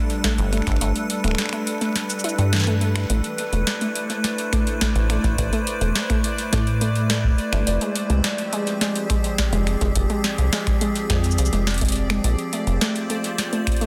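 IDM with an eerie, melancholic mood, where an icy, crystalline pad holds sustained chords over a booming analog drum machine with a crisp, clipped snare and metallic hats, a warbly lo-fi pluck spinning chorused arpeggios, a rubbery, saturated acid bass up front, an electronic kick that drops out from 0.8 to 3.1 seconds, and a dark, pulsing gated texture entering in the background at 3.4 seconds, all under a dense, heavily limited master in this excerpt.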